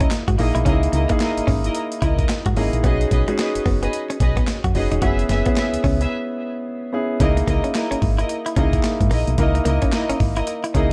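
Punchy and bouncy, this new jack swing excerpt at 110 BPM in C# dorian swings its sixteenths over a gritty, compressed sampler-style breakbeat kit of thumpy kick, medium-tuned snare, hi-hat and handclaps, a round, dark FM bass, an up-front concert grand piano with deep bass and long sustain, a clean, direct-recorded electric guitar riff bathed in lush chorus, and veiled, muted string stabs with vibrato that enter distantly at 0.4 s, set in a dry room as the chords move from C#m69 through B6 and F#9sus4 to a break at 6.1 s before returning to C#m69.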